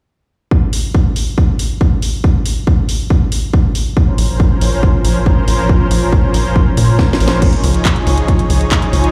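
A punchy, tape-warm electronic kick, joined by a cracking house kit of snare, handclaps, hi-hat and crash, drives this uplifting, soaring trance excerpt at 139 BPM in Db major, with a lush, detuned sawtooth unison pad with chorus and a tight, plucky sequencer bass with tube saturation, both pumping, arriving around 4.0 seconds on Bbmadd9, and a drum fill at 7.0 seconds leading into Dbadd9 at 7.4 seconds in a big, bare-room sound.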